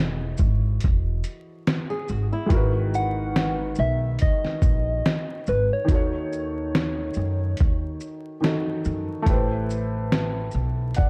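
A gritty, thumpy sampler-style drum kit with a fat snare, hi-hat and shaker sits up front in this melancholic, reflective lo-fi hip hop excerpt at 71 BPM in G# phrygian, its 12-bit crunch re-recorded in a large room. Woody pizzicato upright bass and a soft, felt-muted upright piano with audible action noise carry the Emaj7, G#m9, D#m7b5 and Am9 changes, while a brief fingerpicked flamenco guitar figure with tape echo appears at 1.9 seconds. From 3.0 to 8.8 seconds a round, warbling FM synth lead with chorus carries the melody over a dark production dusted with vinyl crackle and small-room ambience.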